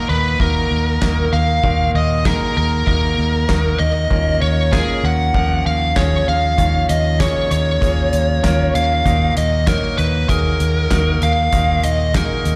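An up-front, biting lead guitar carries the melody with overdriven, picked tone and a slapback echo, set over a brilliant concert grand piano that supplies polished accompaniment with deep bass and its own slapback. This dramatic, driving piano-driven pop cut sits in Eb minor at 97 BPM in a straight 4/4, moving from Ebm to Bbm over Eb at 4.1 seconds and back to Ebm at 9.1 seconds. A dark, round, foam-muted fingered electric bass holds Eb2 from 0.1 seconds, and a dry, damped 70s drum kit with fat snare, tight kick, hi-hat and handclaps joins at 0.4 seconds, all heard as a live gig through the venue's PA with recital hall reverb.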